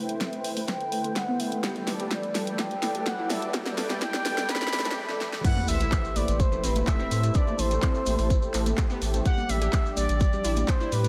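A warm, detuned sawtooth pad and a round, deep analog bass, both pumping under sidechain, open this emotional, expansive progressive house excerpt in A dorian at 126 BPM, joined by a lush detuned unison pluck playing filter-swept arpeggios with delay, a punchy up-front kick, a layered pop kit with a fat snare, claps, hi-hat and crash, a smooth, expressive sawtooth lead with vibrato and delay, and a background riser and sub drop through a drum-filled build, before grainy maracas arrive at the 5.4-second drop, followed moments later by bright, soft-handed congas, all bathed in a dreamy hall reverb over Am7 and G/A chords.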